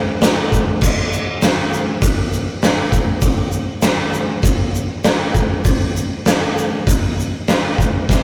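Raw and swaggering, this short rock excerpt at 99 BPM in a straight 4/4 puts an oversized, low-tuned drum kit up front, its punchy kick, medium-tuned snare, hi-hat and dark crash cymbal sounding saturated and gritty with a rolled-off top and the glow of a bright stone room. A grainy egg shaker sits close and dry in the background, both parts playing from 0.2 to 8.2 seconds. The rough rehearsal-room recording carries a moderate booth ambience.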